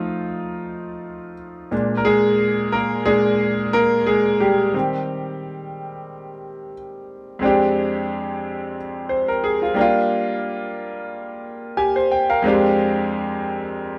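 A lightly swung 90 BPM soul groove in 4/4 frames this bittersweet, smooth solo grand piano excerpt in F dorian, its bright, brilliant, intimate tone sitting up front in a small room with audible action noise, moving from F7 through Bb6 and Eb6 before settling into Fm69 and Gm7, with a fill arriving at 11.4 seconds as the harmony returns to Fm69.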